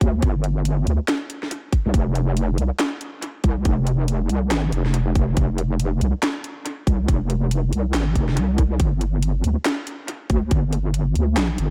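A heavy, resonant wobble bass of detuned square and sine tones, saturated and thickened with chorus, sits up front in this dark, brooding deep dubstep excerpt at 140 BPM with a swung half-time feel, alongside a tight electronic kick that drops out at 10.6 seconds and a garage kit of handclaps, hi-hat and cracking snare given analog delay, both drum parts overdriven, all within an echo-heavy digital ambience.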